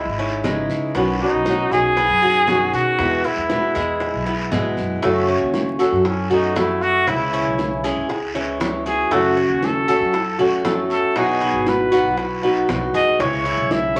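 A breathy, whispered trumpet opens this relaxed, danceable Cuban son and guajira excerpt alongside a mellow, metallic-edged tres playing arpeggios and a woody, thumpy pizzicato upright bass. Within the first half second, an up-front fingerpicked ladder-braced acoustic guitar with a boxy, old-string tone joins, along with round, low-tuned bongos in the background and a raspy guiro. From 5.0 seconds the vintage, intimate trumpet takes a vibrato-laced solo over a minor-leaning progression, all framed by a wet small room and a layer of vinyl crackle.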